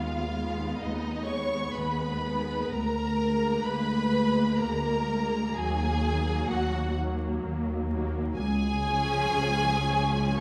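Solemn and elegiac, this slow romantic movement for string orchestra unfolds in Eb minor at 63 BPM in 3/4 with a rubato feel, heard as a brief passage cut from a longer piece. A violin section carries the melody high in its register, its bowed tone smooth, even and lush with vibrato. A second violin line sits beneath it, closer and more expressive, with soft attacks and gliding portamento, while the violas fill the middle with their own expressive vibrato. Dark, woody cellos in the background share the low bass line with a steady, bowed double bass section. The harmony moves from Fm7b5/Eb through Bb7/D to Ebm, then arrives on Db at 8.4 s. The sound is wrapped in the wet, spacious reverb of a scoring stage with a 1.9 s decay, and a layer of vinyl crackle lends it an aged patina.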